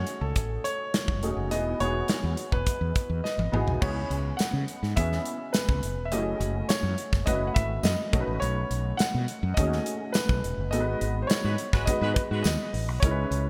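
A round, dark fretless bass sits up front in this polished 1980s jazz-funk pop passage, joined by an up-front acoustic studio drum kit whose tight kick, bright cymbals and gated reverb drive a straight, nocturnal groove. A natural concert grand piano carries the bittersweet melody over a second grand piano's short-sustained chords, treated with ensemble chorus, while a jingly tambourine enters in the background at 4.4 seconds after a drum fill. Near the close, a distant, vibrato-laden jazz horn section with digital delay adds a brief second line from 11.4 seconds inside a band accent, all wrapped in bright, 1980s-style digital production.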